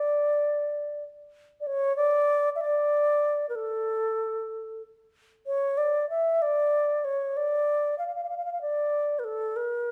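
Melancholic and soulful, this short fragment of a longer Persian piece unfolds in a straight 6/8 within the avaz esfahan mode. A baroque flute plays alone throughout, from 0.0 to 9.9 seconds, its wooden tone pure and mellow. The playing is tongued and coloured with vibrato, and the line stays within a compact span from A4 to F5. The flute sits up front, wrapped in the moderate reverb of a recital hall that lends the solo a gentle sense of space. The tuning rests slightly above standard pitch, at A4 = 441 Hz.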